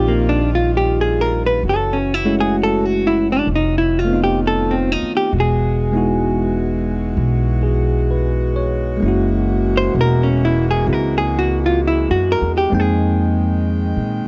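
Jazz ballad at 65 BPM in a gentle swing, late-night and tender in mood, cut from a longer piece. A dark, compressed hollow-body electric guitar takes the melody up front as a clean, picked solo over a bell-like tine electric piano, while a soft-attack saxophone section with light vibrato holds tight sustained chords and a woody, thumpy pizzicato upright bass on gut strings anchors the low end. The harmony moves through Ebmaj9, Gbm7, F7#11, Emaj9, Gb9 and Fm11, captured in a dry, close 1970s-style studio sound with small room ambience.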